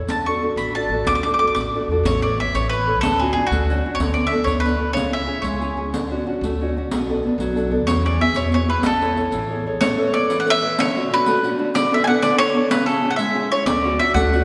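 Italian folk serenade in 6/8, lively and sunny, cut from a longer piece and set in the lush reverb of a church or concert hall. Up front, a bowl-back mandolin carries the melody with picked double strings over a small, fingerpicked nylon-string guitar, while a riq played with soft hands adds bright, vintage-sounding jingles. A woody pizzicato upright bass anchors the low end, drops out at 9.6 seconds and returns at 13.7 seconds, beneath chords rich in major sevenths and added ninths.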